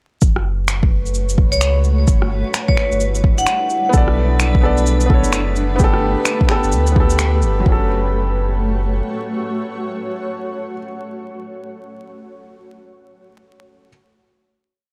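A nocturnal, rainy future garage piece at 129 BPM in F# phrygian with a shuffled swing, where a muffled two-step kick and a skittering shaker, rim and snap beat, both tape-warmed and re-recorded in a large room, drive a round, sidechain-pumped sine sub bass with long gliding notes and a cloudy, detuned granular pad, while a reversed, dreamy swelling texture holds a high note in the background, a metallic vibraphone with hard mallets and slow motor vibrato plays short tape-echoed phrases early on, and a soft, felt-muted upright piano with audible action noise enters at 3.9 s with spread, held chords that carry on after the beat stops into a final F#m chord from 7.7 s, in a dry, gritty mix with transformer saturation and vinyl crackle.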